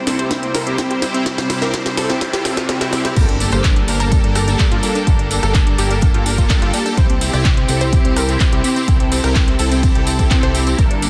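A dense, heavily limited modern mix with light reverb opens this dreamy, expansive progressive house excerpt at 126 BPM in straight 4/4, cut from a longer piece. Earthy chamber strings with light vibrato hold sustained chords under a lush, detuned unison pluck playing arpeggios in the background, both pumping with sidechain, the pluck trailing tape echo, while a very quiet electronic riser and noise sweep run through the build-up and drum fill over C. A house kit with a cracking snare, metallic hats, handclaps, rim clicks and crash, along with an up-front punchy kick carrying studio reverb, drives the track, and a soft, evolving supersaw adds smooth stabs colored by ensemble chorus, cassette tape and tape echo. At 3.2 seconds the drop lands on Gmadd9 as the impact hits, a fat, nasal, saturated analog bass enters low with sidechain pumping, and a jingly, compressed tambourine joins in the background. 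The harmony returns to C at 7.0 seconds, carrying the full groove through to the end.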